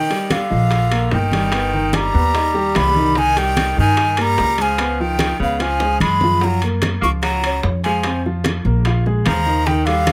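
A breathy metal jazz flute carries the melody up front in this danceable, sophisticated Afro-Cuban jazz excerpt, its straight tone, soft attack and lifted highs giving the line an expressive shine. Beneath it, a bright, punchy tenor saxophone plays a forceful second line in a lower register with scooped notes and a vintage edge, while a warm grand piano accompanies intimately, its action noise audible. A woody, dark upright bass enters at 0.5 seconds, played pizzicato on steel strings and sitting up front with a growly, thumpy weight. The percussion sits further back: thick-skinned congas and tight, high-tuned, band-limited bongos in the background, ringing metal-shell timbales heard distant in a large room, and very quiet claves, with a drum fill from 5.6 to 6.4 seconds. The harmony moves from Ebmaj9 and Cm7 through Db9 and Gbmaj9 before arriving on F5 and Bb5, captured with close, detailed microphones and light reverb.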